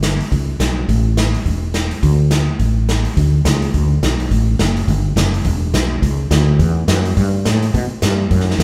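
Country western swing at a brisk 210 BPM, this playful short excerpt pairs a woody fretless electric bass with a swinging big-band drum kit, both up front and playing from start to finish. The bass is growly and round with a hollow-body character, moving between E1 and B2, while the drums bring a smooth, dark hall tone with a medium-tuned snare, punchy kick and hi-hat. The band plays live in one room under a wet studio reverb, shifting into a new section at 3.2 seconds.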